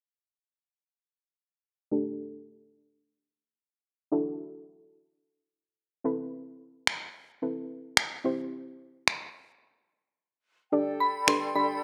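A soft, round synth pluck with chorus and a low-pass filter sweep opens this upbeat, euphoric dance-pop excerpt in G major at 109 BPM, joined at 6.9 s by up-front electronic finger snaps in gated reverb, and after a brief break an airy small flute group with vibrato enters at 10.7 s, followed at 11.0 s by a shimmering, dreamy FM bell melody with ensemble chorus, the whole piece set in a moderate plate-reverb ambience with a bright 1980s-style digital sheen.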